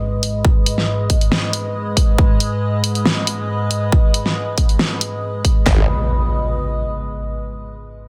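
A punchy, up-front big-room dance drum kit with a huge layered snare, handclaps and hi-hat drives this menacing, aggressive heavy wobble dubstep excerpt at a half-time 138 BPM in G# minor, under an evolving, detuned wavetable pad holding a G# minor chord with chorus, reverb and sidechain pumping, while electronic impacts hit at the start and from 5.7 seconds, where a sawtooth formant-sweep wobble bass with overdrive briefly growls on a low G# in a dense, heavily limited mix.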